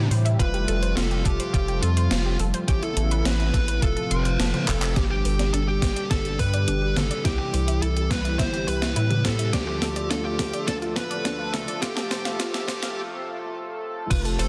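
A dense, heavily limited modern master with light reverb frames this synthwave passage, cut from a longer piece, which moves at 105 BPM in a straight 4/4 with a nostalgic, driving mood. A round, deep analog bass and a thumpy electronic kick anchor the low end. A gated 80s digital drum machine adds a gated-reverb snare, handclaps, hi-hat, tambourine, toms and crash cymbal, with drum fills from 4.7 s. A shimmering, chorused pulse-width pad holds sustained chords with sidechain pumping beneath a picked fuzz lead guitar that carries the melody through distortion and tape echo. A detuned, bright analog pluck plays arpeggios in the background with chorus and delay. The harmony moves through Fadd9, Aadd9 and F, then shifts to G, C, Dm and F when the second section arrives at 5.0 s, where a filter sweep runs across the arpeggios before a break at 13.0 s.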